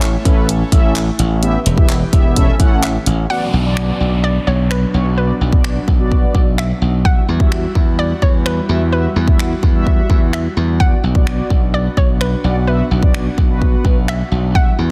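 Bittersweet and driving, this dance-pop excerpt in B minor moves at 128 BPM in a straight 4/4, opening on a drop where a punchy, up-front electronic drum kit of kick, hi-hat, handclaps and finger snaps (with soft clipping on the snare) joins a bright, amped slap bass and mellow, detuned synth brass, both pumping with sidechain, over a very quiet, breathy pad with a noise layer. At 2.8 s a hollow, bouncy square-wave pluck takes the melody with chorus and dub echo, and a background downlifter sweeps from 3.3 s to 7.0 s as the harmony settles onto Bm and Emadd9. The dense, heavily limited mix stays dry, with little reverb.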